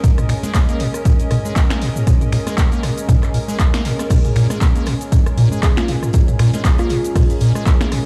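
A squelchy, resonant square-wave acid bass drives this gritty acid house excerpt at 118 BPM in Bb minor, its tube-saturated riff pumping against an up-front, punchy electronic kick, a tape-warm analog drum machine with claps, snaps, shaker, rim clicks, toms and crash, and a very quiet acoustic kit adding hi-hat, snare and tambourine. Beneath it, a smooth, detuned sawtooth pad holds a sustained Bbm7 with chorus, while a blurred, evolving granular cloud pad drifts in the background. At 5.6 seconds a round, tine-like FM pluck with a warbling chorus and digital delay slips in briefly before 7.3 seconds, and the whole mix rings out through a stone room's reverb as if played over a big sound system.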